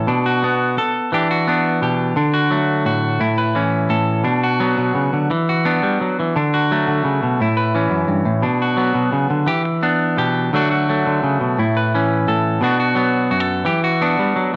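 A bright, clean semi-hollow electric guitar plays alone and up front throughout this sunny, carefree highlife fragment in a straight 12/8, picking through a repeating Bm–Em7–D–A cycle with a warbly pitch drift, all bathed in a wet echo-chamber reverb and a rolled-off top end.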